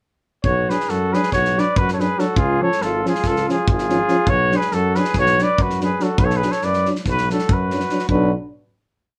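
Fiery and restless, this short Balkan brass band piece in B dorian sharp4 drives along at 282 BPM in eighths, counted in 9/8 with a straight feel. A mellow, vintage-toned trumpet leads from 0.4 s with hook-like motif phrases, light vibrato and a soft attack, sitting up front, while a second trumpet enters at 0.5 s to shadow it with a harmony line mostly in thirds. From 0.7 s, a dark euphonium and a warm euphonium sit in the background, each carrying one line of the group's chords on the offbeats, the warm one with light vibrato. Underneath, a clear tuba holds down root and fifth bass on the main beats, and an acoustic drum kit, muffled and lo-fi with a rolled-off top, a punchy kick and a medium-tuned snare, plays a two-stick pattern that sounds as if it was caught in a small room. The harmony moves from Bm to C# and back to Bm, all in moderate studio reverb, before the band closes on a final chord.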